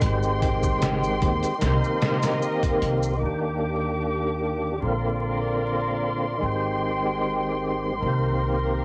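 Trip hop at 75 BPM in 4/4, this short, smoky and cinematic excerpt is cut from a longer piece and moves through Abmaj7, Cm7, Ebmaj7 and Bbadd9 chords. A fat, lightly overdriven percussive tonewheel organ sits up front with chorus vibrato, a fast rotary speaker, tremolo and tape echo, while a muted string section, bowed con sordino with vibrato, holds veiled sustained chords through a low-pass filter. A woody, growly pizzicato upright bass anchors the low end throughout. A gritty, pitched-down sampler-style drum kit with a thumpy kick, medium-tuned snare and hi-hat plays until 3.0 seconds, and soft maracas sit in the background until 3.2 seconds, after which organ, strings and bass carry on alone. Light studio reverb, a home recording on cassette and vinyl crackle give the whole a dusty, intimate sound.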